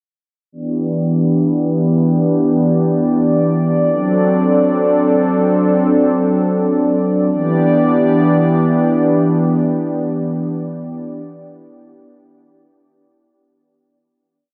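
A lone analog pad opens this melancholic, spacious hip hop piece at 0.5 seconds, its detuned sawtooth tone softened by chorus and a low-pass filter sweep as it drifts in free time from Em7 to D7 in E minor. Sitting up front with a soft attack and mellow sustain, the pad settles back onto a final Em7 chord at 7.3 seconds. A huge ambient reverb gives the whole short piece a vast, hazy space.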